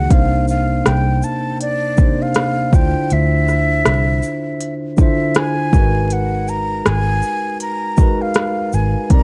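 Reflective and nostalgic, this lo-fi hip hop excerpt moves at 80 BPM in 4/4 with a 16th-note swing, its dark production dusted with vinyl crackle and a digital ambience. A breathy, mellow concert flute carries the melody in a close-miked, straight, unsteady tone, while a clean tine electric piano with cassette tape colour sits up front over chords of Cm9, Dm9 and Abm9. Beneath them, a round, foam-muted electric bass and an organic electronic drum kit entering at 0.1 seconds, with soft kick, crisp hats, rim click and shaker re-recorded in a small room, hold the groove.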